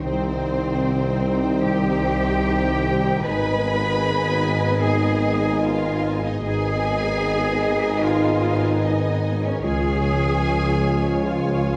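A lush, distant violin section carries the melody with smooth vibrato, joined by a second, more focused violin line and a dark, woody viola section in the background, in this tense, vast hybrid orchestral and electronic film cue. Beneath them, a very quiet, mellow French horn section and a warbling, lo-fi tape-like pad sustain the chords. A clear tuba, a rich double bass section and an expressive cello section hold down the bass as the harmony moves from C minor to A-flat minor at 3.2 seconds and on to D-flat at 9.6 seconds, all inside a moderate scoring-stage reverb.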